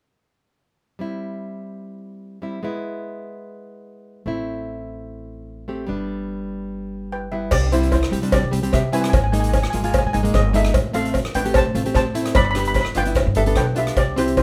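Festive and carefree, this calypso excerpt opens with a small, up-front fingerpicked nylon-string guitar with audible finger squeak, joined at 4.3 seconds by a thumpy pizzicato upright bass, before a shimmering double-seconds steel pan takes the melody at 7.1 seconds and an airy street-band drum kit with a boomy kick and dark cymbals arrives alongside a close, dry cowbell at 7.5 seconds, all in moderate studio reverb.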